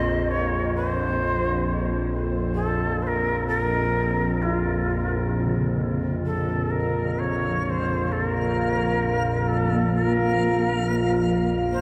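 In a straight 4/4 pulse, this desolate, dark ambient drone, cut from a longer piece, sets an airy, distant shakuhachi melody with a crisp chiff and delay over a tense, string-like bowed drone, while a mellow bronze metallophone fades in through shimmering, delayed arpeggios in the background, a reversed, granular swelling texture joins at 6.2 s and a deep analog pad with chorus and phaser arrives at 7.2 s, inside a cavernous cathedral reverb.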